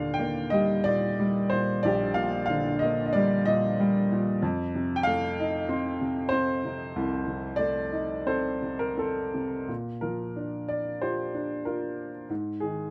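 A clear, woody upright piano sits up front, playing alone for the full 12.9 seconds of this short cut from a longer lyrical classical piece, with a natural tone spanning Bb1 to G5. The mood is relaxed and gently warm, moving in a rubato 4/4 at roughly 82-96 BPM in Bb major, tuned to A4 = 444 Hz, with harmonies passing from Ebmaj7 through F7 before a new section opens on Bb6 at 9.7 seconds and touches Ab5. A modest small-room reverb and a dark production give the piano an intimate, close setting.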